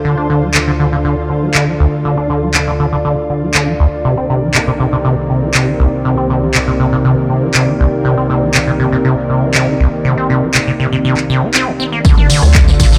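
A squelchy, resonant sawtooth acid bass riff sits up front in this hypnotic, trippy acid house excerpt, thickened by tube saturation, chorus and dub echo, with a filter sweep on it until 12.0 seconds. Beneath it, a lush, detuned unison pad holds sustained Dm7 and Cm7 chords with sidechain pumping, a warbling, lo-fi tape-like pad adds mellow, nostalgic texture, and a punchy analog drum machine enters at 0.5 seconds with handclaps, hi-hat, ride cymbal, rim click, tambourine and toms. At 12.0 seconds, as the harmony returns to Dm7, an up-front electronic kick and a deep, round sine sub bass join in the background, the whole scene set in light reverb.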